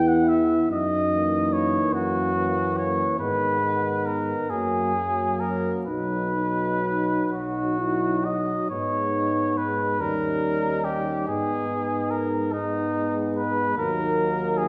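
This classical, hymn-like passage for brass band, cut from a longer piece, moves in a slow, rubato lilt of six and has a tender, warm mood. A mellow cornet carries the melody up front with a light vibrato, while a distant, roomy French horn section sustains a second line in the background. Two euphoniums fill the accompaniment: the higher one has a smooth top and a gentle vibrato, and the lower one has a vibrato of its own and a vintage tone. A tuba anchors the bass with a soft attack, sounding somewhat far back in the space. All five parts play throughout, and from 8.7 s the harmony leans on minor chords, giving the second half a more wistful shade. A recital-hall reverb wraps the ensemble in the resonant glow of a church or concert hall.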